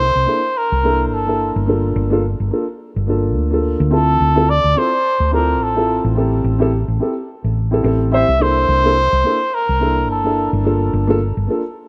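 A cup-muted trumpet and a hollow-body electric bass open this smooth, relaxed sunset chillout excerpt together, with a dark concert grand piano joining at 0.3 seconds. Set at 107 BPM in 4/4 with a gentle 16th-note swing in G dorian, the piece drifts through C13, Gm7, Dm7 and Am7 chords. The trumpet carries the melody in a soft, veiled, classical-style voice, its tone roughened by vintage 12-bit sampler grit and trailed by delay until it stops at 10.5 seconds. Beneath it, the fingered bass sits up front with a round, punchy, amped sound. The piano's mellow, boxy accompaniment, with deep bass and audible action noise, passes through a low-pass filter and delay, and a filter sweep moves across it for the whole passage. Light studio reverb surrounds the mix.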